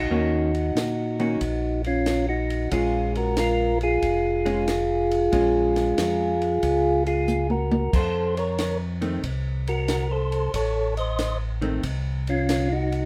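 Soulful and smoky, this soul jazz organ trio excerpt swings at 92 BPM in Bb minor, with a percussive tonewheel organ carrying the melody through a slow rotary speaker over a round, lightly overdriven organ bass with chorus vibrato, a dark, compressed hollow-body guitar accompanying from 0.1 seconds, and a dry cocktail drum kit with a high-tuned snare and punchy kick that enters at 0.5 seconds and plays a fill at 7.3 seconds as the chords move from Ebm7 through Bbm7 to F7 in a light reverb.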